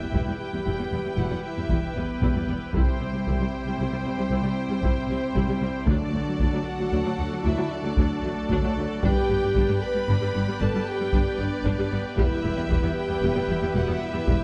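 A majestic, heroic orchestral film cue in 12/8 opens with strings, brass, organ and taiko sounding together: lush, focused violins carry the melody over a distant second violin line and smooth violas, while mellow French horns, very quiet trombones and a shimmering celeste organ stop hold sustained chords. Close cellos and soft-attack double basses anchor the bass beneath a taiko ensemble struck with heavy sticks in a live room, and a round, softly malleted timpani sounds briefly from 5.9 to 6.6 seconds. The production is dark with moderate scoring-stage reverb, and the harmony moves from Em through C, D and G before returning to Em.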